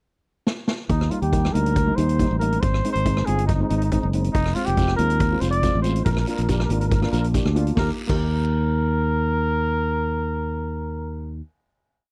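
A drum fill on the street-band kit opens this short, festive calypso at 140 BPM in Eb major, leading into a carefree verse at 0.9 seconds. A breathy, mellow trumpet carries the jazz-style solo melody up front, with light vibrato, scooped notes and a distant, roomy tone, wandering freely rather than repeating a motif. Beneath it, a bright, direct fingered electric bass plays a syncopated figure, while shimmering, metallic cello pans struck with medium rubber sticks add airy triad chords over a progression from Ebmaj7 through Abmaj7, Fm7 and Bb7. The acoustic kit keeps a calypso groove with dark cymbals, a medium-tuned snare, rim clicks and a boomy kick, and a raspy, vintage-sounding guiro joins in the background from 4.4 to 8.2 seconds. The recording is dry and close in a 1970s studio manner, and the piece settles on a final Eb chord that rings until 11.2 seconds.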